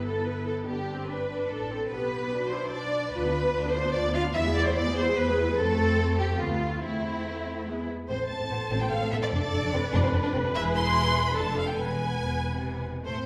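In a quick triple metre, this stormy, dramatic excerpt from a classical-period movement for string orchestra sets a rich, softly attacked first violin melody over a smooth-topped second violin line, an expressive, distant viola accompaniment, an even cello bass and a lush, up-front double bass, all bowed with vibrato and bathed in the reverb of a recital hall.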